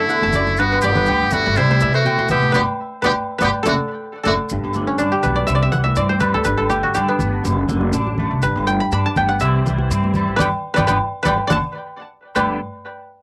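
A muted trumpet opens this carefree, danceable highlife guitar band excerpt, its buzzy, brilliant metal-muted tone carrying the up-front melody with light vibrato and a forceful jazz flavour, while a raspy, gritty tenor saxophone plays a second line beneath it with scooped notes. A clean, twangy electric guitar with ensemble chorus and an up-front koto played with fingerpicks, dry and warm with analog delay on its arpeggios, sound from the start, both carrying a cassette-tape colour shared with the horns. Within moments the rhythm section joins at a straight 122 BPM in 4/4: a woody, thumpy pizzicato upright bass on gut strings, bright high-tuned congas played with soft hands, grainy maracas close by, and ringing agogo bells set back in a large room. The horns stop at 4.3 seconds, and after a short drum fill the koto takes a solo from 4.5 seconds over a cycling G, C and D/F# progression in G major. 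Band accents punctuate the close of each section, and the whole has the light reverb and homespun intimacy of a home cassette recording, cut from a longer piece.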